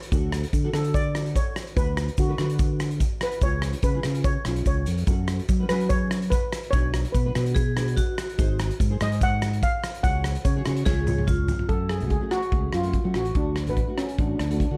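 A dark, lightly reverberant production frames this dramatic, intense calypso, cut from a longer piece, and led by a mellow, shimmering steel pan played with soft rubber sticks that solos through the first 11.7 seconds. Up front, a punchy drum kit with a fat snare in a pumping room and a direct, amped fingered electric bass drive the groove. A double-tracked nylon-string guitar adds full-bodied fingerpicked accompaniment with audible finger squeak, and a grainy tube shaker sits distant in the background; a bright, airy vibraphone with hard mallets and fast motor vibrato joins at 7.5 seconds, and a drum fill at 10.9 seconds leads into the closing section.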